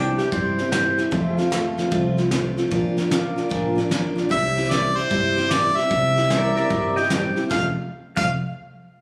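Honky-tonk and classic country in F major, a heartfelt, sunny snippet swinging at 150 BPM in 4/4. A bright, full-bodied dreadnought acoustic guitar, picked up front with a bit of finger squeak, carries the accompaniment from start to finish over a woody, growly pizzicato upright bass and a soft brush kit that sounds distant and roomy, with dark cymbals, a fat snare and a tight kick. One twangy pedal steel, played with fingerpicks and volume swells, voices a second line near the front, heard briefly at the start and again from 6.3 seconds. A second pedal steel holds sustained chords in the background until 7.5 seconds. The harmonica takes the melody from 4.3 seconds, smooth-topped and jazz-inflected, with light vibrato and scooped notes. The chords move C, F, Bb and C before settling on F, and the whole piece sits in a reverberant hall sound captured on a phone in the room, with compression added.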